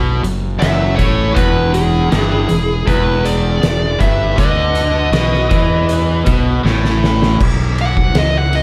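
A dark, smooth lead guitar carries the melody in this gritty, driving blues rock and southern rock excerpt, its overdriven, picked tone up front and touched with slapback echo from 0.6 seconds onward. Beneath it, a biting, double-tracked overdriven guitar plays the low riff until 7.4 seconds, while a fuzzed, fingered electric bass growls up front. An oversized, low-tuned acoustic drum kit with a fat snare and punchy kick sounds saturated in a bright stone room, moving through crash, hi-hat, ride and snare at a straight 80 BPM in 4/4. A second, lo-fi lead guitar through a small cranked amp sits in the background with its own slapback echo, tracing a quieter line until 6.6 seconds, when a drum fill arrives. The harmony moves from Esus4 to E7 and then B7 in B mixolydian, and at 7.4 seconds the music shifts to B5 as the lead guitar takes a brief solo, all under a light reverb.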